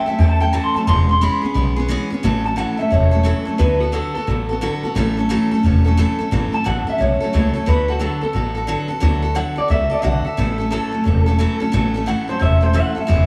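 A small, moderately live room gives this upbeat, rollicking rockabilly cut from a longer piece an intimate sound, with a swung eighth-note feel in four. The electric guitar, played through a small old amp, carries the melody with a bright, twangy, slightly broken-up tone, bathed in spring reverb and tape echo, and it opens with a clean solo that runs to 2.2 seconds. Up front, a picked steel-string dreadnought acoustic guitar fills in the accompaniment with a full-bodied sound and fresh strings. An upright bass, entering at 0.1 seconds, thumps out the low end with woody, dark gut-string pizzicato and sits prominently in the mix. The harmony rolls between A6, E6 and D6 chords, giving the tune a lively, good-time bounce.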